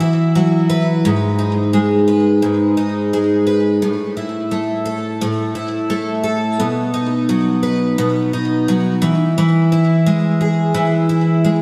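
Heartfelt and sunny, this dreamy pop excerpt at 86 BPM with a gentle 16th-note swing in E major features a bright, shimmering picked twelve-string acoustic guitar up front, its octave-doubled strings carrying lush chorus, delay and audible finger squeak as it moves from Esus2 through G#m, A5 and B to land on E at 9.0 seconds, all soaked in a long hall reverb.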